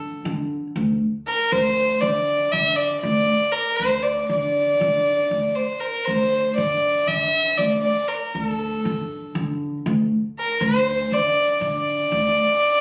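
Captured on a phone in the room, this short piece cut from a longer performance carries a light club reverb and some compression, with both players sitting up front. It is a Turkish makam ensemble piece in D makam ussak, moving at 237 BPM counted in eighths in a straight 9/8, with a soulful, melancholic mood. A single bowed violin, close and warm, carries the melody in a period style, its gut-string tone nasal and reedy with an airy bow, ranging from A4 up to E5-30c. Underneath, an acoustic upright bass is played pizzicato on steel strings, giving a woody, warm foundation between D2 and D3. The bass drops out at 12.3 seconds, leaving the violin alone until it ends at 12.8 seconds.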